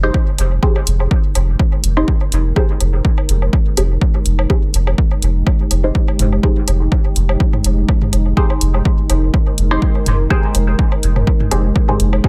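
A punchy, overdriven electronic kick anchors a steady dub techno groove with a light swing on the sixteenths, joined at 0.4 seconds by a gritty, analog-toned hi-hat. Beneath it, a round, mellow sub bass holds a single low note, sitting up front with the kick and breathing with sidechain pumping. A muted, detuned chord stab with a short filter pluck repeats a single minor-ninth chord, colored by phaser, a cassette-tape grain and dub echo that trails off into the space. Behind them, a deep, moody pad sustains the same harmony with a slow attack and a warbling, vintage character from chorus and reverb, also pumping against the kick. Layered electronic woodblock and toms sit low in the mix, their hits sent into dub echo, while a digital, echo-heavy ambience wraps this hazy, dark fragment of a longer piece.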